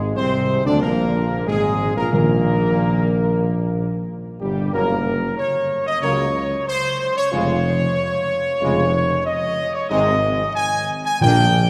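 A regal, solemn classical brass chorale opens at a stately 92 BPM, with the trumpet section carrying the melody up front in a mellow, tight tone with a soft attack and light vibrato. A distant, roomy French horn section and a close trombone section hold sustained chords in the background, while a tuba anchors the bass, moving through Ab, Gm, Gb and Db/F before returning to Ab. Timpani played with soft mallets add round, dry strokes at 2.1 s and again at 11.2 s, and the ensemble rings in a long, wet church reverb in this fragment of a longer piece.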